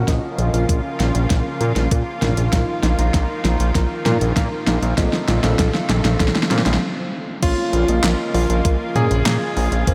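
A straight 4/4 synthwave groove at 98 BPM drives this cinematic cut from a longer piece, with a thumpy, tape-warm electronic kick and an overdriven pop kit of fat snare, warm hats, handclaps, toms and crash running a fill until a brief stop at 6.8 seconds, while a fat, detuned analog bass and a lush unison pad pump under sidechain through Bbm, Ebsus2/Bb and F/Bb. A very quiet, round pluck plays arpeggios beneath chorused FM electric piano stabs trailing diffuse ambient delay in the background. At 7.4 seconds, as the chords return to Bbm, a vintage electric grand piano with clangy bass and tape echo takes the melody, joined by a pure, mellow synth bell on a second line, all soaked in a dreamy cathedral reverb.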